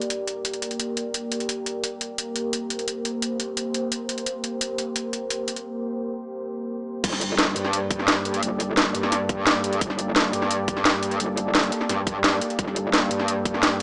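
A deep, moody pad of detuned sawtooth voices over a sub octave opens this dark, futuristic drum and bass fragment in G minor at 173 BPM, its slow attack and long release softened by chorus, built-in reverb and a gritty vintage 12-bit sampler edge while a filter sweep moves through its sustained Gm chord. Alongside it, a layered electronic kit drives the straight 4/4 groove with a cracking snare, crash cymbal and metallic hi-hats, sitting up front with the feel of being re-recorded in a small room. A break arrives at 5.7 seconds, and at 7.0 seconds the drop brings in a tight electronic kick and an aggressive, up-front FM wobble bass that is saturated, compressed and metallic, with chorus and sidechain pumping that it shares with the pad. Under the drop the harmony shifts to Gmadd9, giving the close a tense, hard-edged weight. The whole mix sits in a lush hall reverb and carries a small-speaker character, leaving the texture shadowy and technical.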